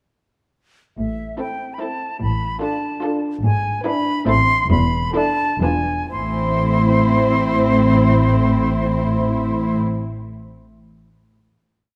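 Heard in a moderate scoring-stage reverb, this sneaky, mischievous and whimsical film cue in A minor moves in a straight 3/4 at 120-149 BPM: an airy, up-front concert flute opens at 1.0 s over veiled, con sordino cellos and double basses sharing the bass line, then muted violins join with the melody and a second line while violas hold sustained chords, the music slowing from 2.8 s before coming to rest on a final A minor chord at 6.1 s.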